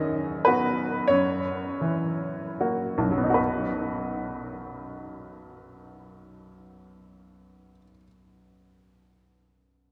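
Drenched in a cathedral-like reverb with a 5.3-second tail, this short excerpt of a romantic classical nocturne places a clear, natural-sounding baby grand piano up front, its notes carrying a short sustain inside the vast church-hall space. The solo piano moves in a slow, rubato 12/8 at about 24-33 BPM in B major, spanning B1 to D#5 with a nostalgic, dreamy mood. It slows down over the opening 3.4 seconds, moving from B/F# to F#7 before arriving on B as a new section begins at 3.4 seconds.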